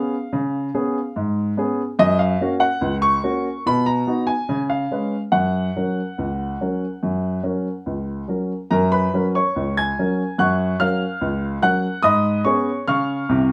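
A baby grand piano opens alone on a C#7 chord, setting a lively, cheerful ragtime piece in F# major at 72 BPM in 2/4 with a straight feel. The chords move through F#, B and back to C#7 within the first few seconds, and the piano ranges from B#1 down low up to G#6 at the top. Its tone is warm and open, with long sustain, and it sits up front in the mix. A small room reverb with a 0.5 second decay wraps the instrument in a short, wet ambience, and the overall production leans dark and warm. The opening strain returns at 8.7 seconds, and a C#7/G# chord arrives at 12.0 seconds before this short excerpt from a longer piece ends at 13.5 seconds.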